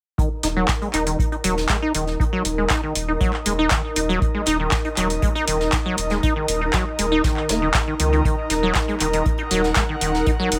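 Acid house at 119 BPM in Eb minor, this raw, trippy excerpt from a longer piece sits on a single Ebm chord for its full ten seconds in a steady, straight 4/4. A squelchy, resonant sawtooth acid bass riff leads up front, its fast-attack filter pluck decaying, coloured by tube saturation, subtle chorus, delay and sidechain pumping. Beneath it, a thick, saturated sine sub bass enters at 0.4 s and holds sustained low notes, also pumping against the beat. The drums stack a dry, deep electronic kick with a booming analog drum machine that adds handclaps and metallic hi-hats, both tape-toned and up front, while a jazz brush kit of hi-hat and medium-tuned snare sits in the background, polished and airy in its studio reverb. A breathy, detuned pad with a noise layer and slow attack spreads a bright, chorused haze above, swelling in and out with sidechain pumping, and the whole mix sits in a moderate small room.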